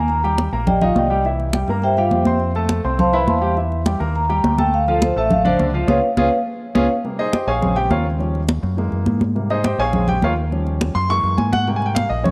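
Driven by close, dry, high-tuned congas at a brisk 207 BPM in straight 4/4, this lively, sunny Afro-Cuban jazz piece sets a mellow, ringing soft-mallet vibraphone melody over intimate grand piano accompaniment with audible action noise and a dark, round fingered electric bass, all in a moderate plate reverb; the band hits an accent from 5.9 seconds, the vibraphone stops at 6.8 seconds, and the piano takes a solo from 7.0 seconds.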